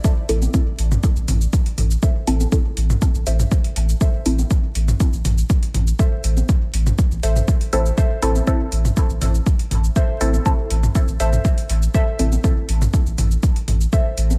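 Deep and meditative, this dub techno excerpt sits at 121 BPM in a straight 4/4, holding on A minor throughout its roughly 14 seconds. An overdriven, layered electronic kick drum sits up front, with a deep punch and the air of a large room, while a quieter overdriven shaker and metallic hi-hat share that big-room character. A round sine sub bass on A1 enters at 0.3 seconds, pumping against the kick, and electronic congas and toms join at 0.4 seconds with a small-room sound and their own sidechain pumping. From the start, a warbly, dusty pluck riff moves between A4 and E5, detuned and lo-fi with a noise layer, filter sweep, lush chorus and dub echo. A muted, dark chord stab built from detuned sawtooth and square waves with a sub octave comes and goes, its short decay smeared by phaser, cassette tape colour, pumping and dub echo. The whole mix is fairly dry, with little reverb, and a prominent vinyl crackle runs underneath.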